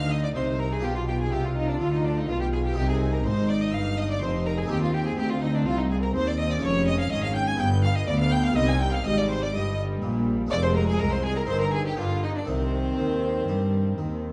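Stormy and dramatic, this baroque-style concerto movement in C minor drives forward at 124 BPM in a straight 4/4, heard here as a brief portion of a longer piece. A rich, expressive solo violin carries the melody with vibrato and portamento, sounding slightly distant, while a clear, intense chamber violin section also plays the melody higher up, reaching Ab6. Beneath them, a smooth, even violin section holds a second line in the background, and a focused viola section with a smooth top fills in the accompaniment alongside an airy, Italian-style harpsichord strung with two sets of strings. The bass is anchored by an up-front double bass section, bowed with light vibrato, and a background cello section that adds its own portamento. Harmony moves from C minor through G7/B, Db/F and F minor before settling back on C minor at 12.5 seconds, and the whole ensemble sits in a moderate recital hall reverb with a dark, warm production.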